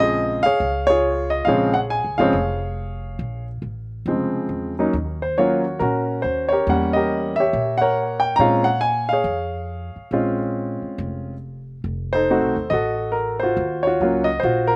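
A clear, up-front baby grand piano carries the melody with short sustain and a slapback echo, while a woody, thumpy upright bass sits low and quieter beneath it in this moody, swinging jazz excerpt, heard dry and open-air with little reverb as the harmony moves from Bbm7 through Edim7 and F7b9 to Ebm9.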